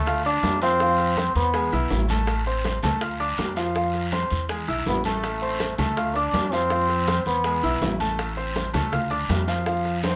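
In moderate studio reverb, this fiery, danceable salsa excerpt at 162 BPM in A harmonic minor sets a bright, roomy solo trombone up front for phrases ending at 2.1 seconds and resuming from 4.9 to 8.0 seconds, over a brilliant baby grand piano with audible action noise and long sustain, a woody, thumpy pizzicato upright bass, a raspy guiro, and background congas, tight high-tuned bongos, metal-shell timbales and grainy maracas, while the harmony cycles through Dm, F5, E and Am.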